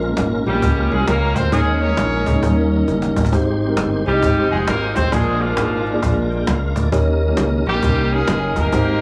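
Soulful and hopeful, this uptempo gospel excerpt swings at 133 BPM in 4/4, moving from Bbm7 through Eb7sus4 and Eb7 to Abmaj7, Bb7 and back to Eb7. A growly, punchy fingered electric bass sits up front beside a mellow, clean tine electric piano and a snappy, vintage cajon with soft hands and a drum fill at 2.9 seconds, while a lightly overdriven tonewheel organ with key click, chorus vibrato and fast rotary speaker holds sustained chords in the background and takes a fill at 6.0 seconds. Entering at 0.5 seconds, a tight horn section carries the melody with light vibrato, octave doubling and tape echo, all set in a small room with light reverb.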